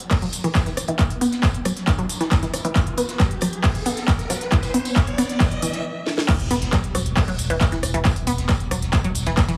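Hypnotic, intense peak-time techno at 136 BPM in E harmonic minor, where an overdriven electronic kick, a cracking, pumping techno kit, a faint, thuddy cloth-damped kit and a squelchy, resonant blip pluck riff with phaser and digital delay drive a build-up over Em, as a background riser climbs to a brief stop and drum fill before the drop at 6.3 seconds brings an impact and a thick saturated sub bass on E1, all through a heavily compressed radio sound with plate reverb.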